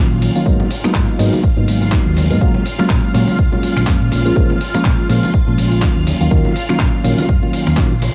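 This short cut from a longer piece has the dusty, muffled sound of a home cassette recording, its top end rolled off and its room nearly dry, with sidechain pumping breathing through most of the mix. It is a groovy, funky slice of filtered disco house with a swung 4/4 feel, moving through G#m7, F#maj7/A#, A#m7 and D#m7. An up-front, reedy electric piano carries the accompaniment through a phaser and gritty 12-bit sampler character, while a lush string machine holds slow-attack sawtooth chords with ensemble chorus above it. A round, dark hollow-body electric bass with tube saturation anchors the low end from the opening second. A compressed, sampler-style kit of finger snaps, handclaps, hi-hat, ride and tambourine comes in at 0.1 seconds, and a punchy analog kick joins at 0.5 seconds along with very quiet, distant tambourine and hard-hand congas.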